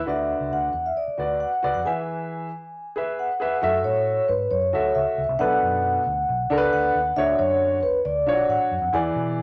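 A dark, round, punchy muted electric bass opens this joyful cut of uptempo 1960s-style soul at 136 BPM, joined almost at once by a woody, intimate upright piano, its action noise audible and its long sustain up front, and a mellow, ringing vibraphone played with soft mallets and a slow motor vibrato carrying the melody. The harmony moves from Bm to E, which arrives with a break from 1.9 to 3.6 seconds, then on through F#m7 and Bm7 to Dmaj7, all set in a moderate large-studio reverb that gives the fragment a warm glow.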